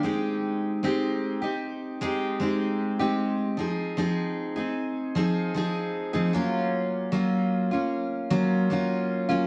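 Nostalgic and sunny, this brief indie pop excerpt at 76 BPM in 4/4 features a single picked steel-string acoustic guitar, full-bodied and up front with audible finger squeak, moving through Abmaj7, Fm7 and Gbmaj7 under lush chorus and a plate reverb, all colored by the warbly pitch drift of worn old cassette tape.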